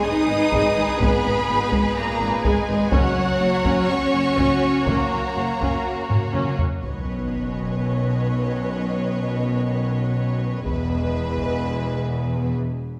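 A straight 4/4 pulse at 125 BPM drives this heroic, triumphant passage of epic orchestral film score in B major, cut from a longer piece. A taiko ensemble struck with heavy sticks, close and dry, joins at 0.5 seconds and plays a fill that lands at 6.8 seconds on a huge, dark sub drop and cymbal swell as the music moves from G#m and F# to a broad Badd9. The drums then fall away and return briefly near 10.7 seconds over the closing E chord. Two symphonic violin lines sing with clear, intense vibrato, the higher one carrying the melody while the other holds a second line beneath it. Lush violas fill the middle with a smooth, even tone, and mellow French horns sustain chords from further back in the room. Rich cellos in the background and distant double basses anchor the low end. A wet scoring stage reverb places the orchestra at a grand distance, setting it apart from the close, dry drums.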